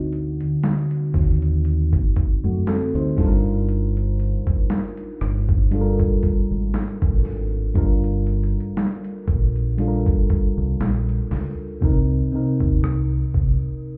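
A slow 59 BPM groove in 4/4 with a light sixteenth-note swing drives this late-night, sensual contemporary R&B fragment, cut from a longer piece. Up front, a gritty, compressed sampler-style soul drum kit with overdrive, a thumpy kick, medium-tuned snare, rim click and hi-hat plays beside a dark, round fingered dub bass and a soft, full-bodied FM electric piano with chorus, a noise layer and quick, decaying notes. The harmony moves from D7b9 to Gm7 at 3.2 seconds and settles on Cm7 at 11.8 seconds, and the mix sounds muffled, as if heard through a wall with a club-like reverb.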